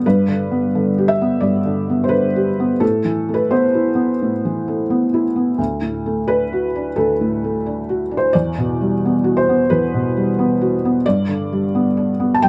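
Intimate and tender, this short neoclassical minimalist piano piece is cut from a longer work and moves at 87 BPM in 4/4 with a loose, rubato feel. A felt-muted upright piano plays alone from 0.0 to 12.5 seconds, covering a range from D2 up to A5. Its tone is soft and mellow, sitting up front with the audible action noise of the instrument adding a close, personal quality. The harmony in G major passes through G, Amadd9, D and Emadd9 before settling back on G at 11.0 seconds, and the piano is tuned to A4 = 439 Hz. Light reverb gives the sound a gentle sense of space.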